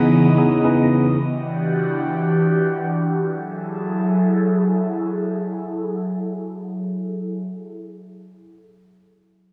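Amapiano in free time and F# minor, late-night and hypnotic, where a mellow, clean tine electric piano sits up front through a low-pass filter until 1.2 seconds, while a soft, breathy, detuned pad with a noise layer, slow attack and long release holds sustained chords through chorus, phaser and low-pass filter until 7.7 seconds, with a filter sweep over the first 3.3 seconds and chords moving from C#m9 to Em9 to F#m9, all within a dark production and moderate studio reverb.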